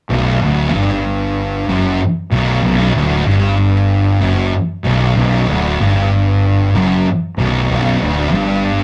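A rough rehearsal-room recording with tube saturation and a moderate small-room reverb frames this hypnotic, sludgy metal fragment in B minor, moving at a straight 95 BPM in 4/4 on a single Bm chord. Two thick, distorted fuzz guitars pick a low riff from 0.1 to 8.8 seconds, one pushed up front and the other sitting in the background. Beneath them, a fingered electric bass adds a bright, growly, overdriven fuzz tone that is direct and amped.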